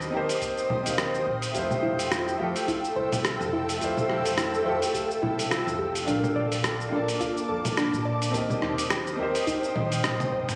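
Sunset chillout at 106 BPM in F major, relaxed and smooth, with a 16th-note swing and chords moving from Eb6 through Fmaj9 and Bbmaj7 back to Eb6 in this short excerpt. A clear, worn grand piano with delay and shimmer reverb plays accompaniment over an ethereal, airy pad with ensemble chorus and tremolo, while a woody, dark pizzicato upright bass sits underneath and a gritty, tape-warm sampler-style kit of cabasa, congas, hi-hat, rim click and toms stays up front, joined by a deep electronic kick in the background from 0.4 seconds. A soft, round pluck enters at 1.5 seconds with chorused, delayed arpeggios, a drum fill closes the passage at 9.8 seconds, and the phone-recorded sound is bathed in a lush hall reverb.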